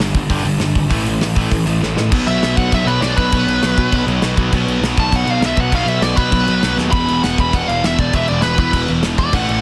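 A straight, driving 4/4 at 199 BPM powers this angry, urgent punk rock excerpt, cut from a longer piece, where a small, pumping acoustic kit with dark cymbals and a tight kick sits up front beside a growly, fuzzed picked bass and three picked guitar riffs: a sludgy overdriven one and a bright, tight distorted one in the background, plus a very quiet double-tracked crunchy part. After a drum fill at 1.8 seconds, a nasal, dark lead guitar with a parked wah, overdrive and digital delay enters at 2.3 seconds for a solo that runs to the end, while the chords move from G5 and A5 to B5 and then E5 at 6.9 seconds, just after another fill. The dense, heavily limited modern master keeps the sound dry and close.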